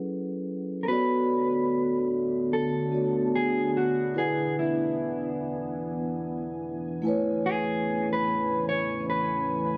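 Soft-mallet vibraphone opens this reflective, melancholic hip hop excerpt at 73 BPM, its metallic, ringing tone set up front in a boxy small room over a swung 4/4 feel and chords moving from F#m11 through Bm9 and E7 to Amaj7. A mellow, clean electric guitar carries the fingered melody from 0.8 seconds with analog delay, and a deep, detuned sawtooth pad with a sub octave, chorus and its own reverb swells in beneath from 1.3 seconds. The dark, warm production sits in a moderate plate reverb, giving the short excerpt a moody haze.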